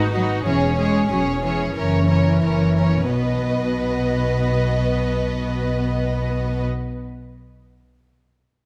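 Cheerful and lively, this brief cut from a quick classical-period movement in B major moves at 85-95 BPM in a straight 4/4, slowing over its first 3.1 seconds as a warm, intimate violin section carries the melody above a focused second violin line, lush, distant violas, dark, close cellos and a smooth, up-front double bass, all bowed with vibrato in a moderate scoring-stage reverb as the harmony passes from C#m/E through F#7 to B at 3.1 seconds.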